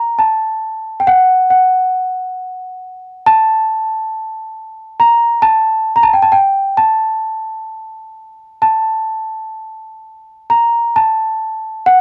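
Caucasian folk in a solemn, longing mood, this short excerpt features a solo celesta in triple time with a free, rubato feel. Its bell-like, delicate tone is struck by hard felt hammers and placed up front, colored by cassette tape grain and a moderate studio reverb in a homely recording.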